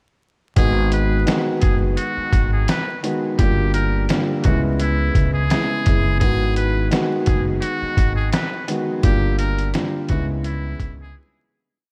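Gritty and moody, this short boom-bap hip-hop piece in G# minor rides a swung 85 BPM groove, with a compressed, pitched-down sampler-style drum kit up front, its thumpy kick and backbeat snare driving a hard boom-bap beat under vinyl crackle and a small room's light reverb. A woody pizzicato upright bass with gut strings plays a deep looped line with muted ghost notes and slides, while a dark, vintage upright piano repeats chopped, long-sustaining chords like a sampled loop over G#m7, Gm7 and C#m7. A close-miked, buzzy trumpet with metal mute plays a short jazz-style looping melody with scooped notes, and the piece fades out from 9.0 seconds into a brief break at 11.2 seconds.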